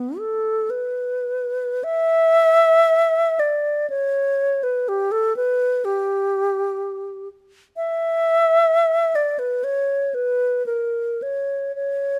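Close, detailed microphones and a light reverb place the alto flute up front, so its pure, warm tone comes through clearly. This is a free, expressive classical piece for the unaccompanied instrument, in B minor with a yearning, mournful mood. The tempo drifts between 50 and 66 BPM in a rubato 4/4, giving the line room to linger. The flute plays alone for the whole passage from 0.0 to 12.2 seconds, ranging from B3 up to E5, its tongued notes carrying vibrato and its upper register sounding lifted. This brief passage is cut from a longer piece.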